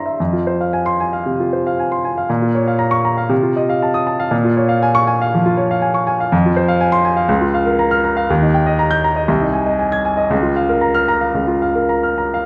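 This romantic classical character piece for solo baby grand piano is passionate yet hopeful, moving in 4/4 with a flexible rubato pulse that drifts between 98 and 124 BPM. The piano sits up front with a clear, polished tone, spanning C2 to Ab6 as the harmony travels from F minor through Bb minor, an F7 over C, and on to Eb and Ab over C before settling on Bb minor over Db near 10.3 seconds. A moderate scoring-stage reverb and a dark production give this 12.5-second excerpt its sense of space and depth.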